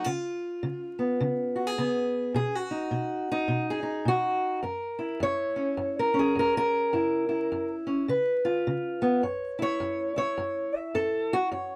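Swung eighths at 105 BPM in 4/4 carry this rollicking, laid-back acoustic country blues fragment in F# mixolydian, where a lone fingerpicked steel-string parlour guitar sits up front with a dark, boxy tone, moving through C#7, B and F#7 before stepping into a solo passage at 9.2 s, all captured by close, detailed microphones in a modest booth ambience under a layer of vinyl crackle.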